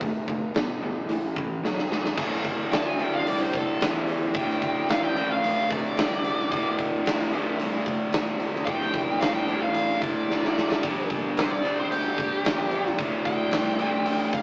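Smoky and brooding, this blues rock and southern rock power-trio excerpt rides a bright, double-tracked distorted guitar riff up front, with a growly fuzz bass in the background and a huge arena drum kit of punchy kick, medium-tuned snare and hi-hat pumping in a hall-like space. After a drum fill at 1.6 seconds, a dark, overdriven lead guitar with wah enters at 2.7 seconds for a solo over chords that move from Dm9 to Gm and finally a D7 with its third dropped, with another fill at 10.3 seconds. The mix has the rough feel of a rehearsal-room take heard over AM radio, wet with a small room's reverb.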